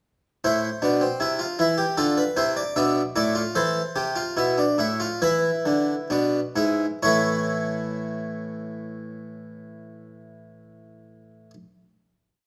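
A baroque-style classical fugue in three parts for solo harpsichord, this short, complete piece carries a solemn, serious mood in 4/4 with a straight feel, its tempo between 62 and 79 BPM. The harpsichord plays alone from 0.4 to 11.5 seconds, spanning G#2 to E5, its plucked, brilliant French-style tone reinforced by octave strings and placed up front in the mix. The three voices unfold in imitative counterpoint through an exposition that moves from A minor through D minor and back to A minor before reaching an E7 chord. The pace slows from the opening until 8.9 seconds, and at 7.0 seconds the music settles onto a final A major chord that rings until 10.8 seconds. A moderate recital hall reverb gives the instrument a sense of space around its forward sound.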